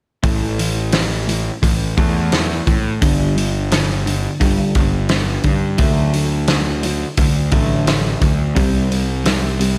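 Cathartic and brooding, this short cut from a longer quiet-loud alternative rock piece moves at 86 BPM in A dorian, with a dark, slightly broken-up electric guitar through a small old amp playing phaser-and-slapback-tinged arpeggios over an A5, G5, D and C5 progression, a round, overdriven fuzz bass sitting up front, and a loose, gritty indie drum kit with a fat snare and punchy kick, all in light studio reverb from 0.2 to 9.8 seconds.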